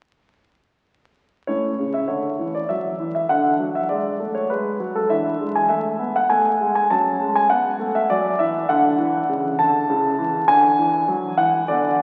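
Crackling like a very old 78 rpm record and bathed in a wet church reverb, this short excerpt from a longer piece captures a playful, cheerful classical-period piano sonatina in A major, moving in a straight 3/4 at 100 BPM. A polished, present grand piano plays solo, up front in the mix, from 1.5 s to 12.0 s, spanning A2 to A5. Its harmony moves from A through D, E7 and F#m, then D, A/C# and back to D.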